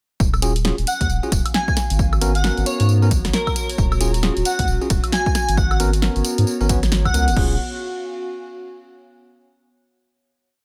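A deep, saturated sub bass sits up front, its thick sine tone pumping against the kick as it carries a skipping, syncopated line in this bouncy, late-night two-step UK garage piece at 134 BPM in Eb minor. Under it, a dry, punchy electronic kick and an analog drum machine, both overdriven, supply swung hats, rim clicks, snare, tambourine, woodblock and crash, with the band hitting an accent at 6.9 seconds. A clean tine electric piano drops syncopated rootless chord stabs roughened by vintage 12-bit sampler grit and trailed by delay. Floating higher, an airy, dreamy lead plays short answering phrases in a soft, detuned unison with vibrato, colored by chorus, cassette tape and delay. A warbling, nostalgic pad drifts through slowly shifting Ebm11 and Abm11 chords with a slow attack, chorus, phaser and pumping, and it lingers alone once the other parts fall away, holding the final rootless Ebm11 until 9.1 seconds under light reverb.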